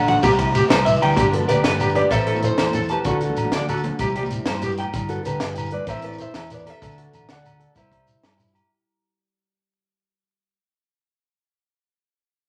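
A fingerpicked flamenco guitar with audible finger squeak opens this carefree, danceable highlife excerpt in a straight 12/8, soon joined by twangy, slightly broken-up arpeggios from an electric guitar through a small old amp, a round fingered electric bass, a tight funk drum kit with a high-tuned snare that plays a fill from 0.4 to 1.2 seconds, soft-handed congas in the background, ringing agogo bells and a grainy shekere, before a dark, woody, up-front melody on an old ladder-braced acoustic guitar with old strings enters at 1.3 seconds as the music fades out over chords moving through C, G, Am and D, all set in a wet, large studio reverb with vinyl crackle.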